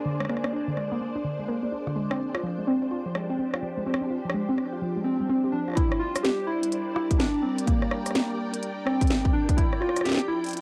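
IDM in a glitchy, cerebral mood, this short cut from a longer piece moves with a swung sixteenth-note feel in 4/4. A soft string machine holds silky, slow-blooming chords throughout, coloured by phaser and ensemble chorus, while a faint bubbling stepped-filter texture sits resonant and bright in the background with plate reverb. In the opening stretch a warbling, detuned pluck plays mellow arpeggios up front with tape echo, and an industrial drum kit of clanging snare, crisp hats, rim click and shaker enters at 0.2 seconds. Around 5.0 seconds nostalgic lo-fi synth keys take up the melody with chorus and tape echo, and a heavy electronic kick joins at 5.8 seconds as the harmony shifts from Bb7 and Fmadd9 toward Gm. The whole has the dusty character of a home cassette recording in a small, wet booth.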